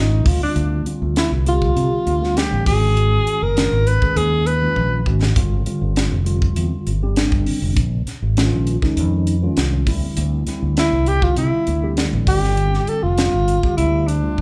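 Electric jazz fusion with a driving, nocturnal mood, cut from a longer piece, where a smooth-topped alto saxophone sings an up-front jazz melody with vibrato, pauses as a drum fill arrives near 5 seconds and returns at 10.8 seconds, over a clean electric piano with a phaser, a round, dark fingered bass, and a crisp, airy drum kit with a high-tuned snare and punchy kick, all heard as a band playing live in one large studio room with moderate reverb.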